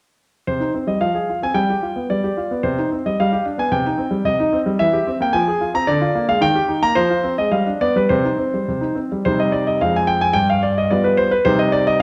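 A smooth, vintage-toned grand piano sits up front and plays alone from 0.5 to 12.0 seconds in this elegant, dramatic classical-period sonatina excerpt in C minor, taken at 110 BPM in 2/4 with a rubato feel. Spanning F2 to Bb5, its harmony circles C minor through F minor and G7, briefly turns toward E-flat, and then returns home, with a new section beginning at 9.3 seconds. A moderate recital-hall reverb gives the piano a natural sense of space.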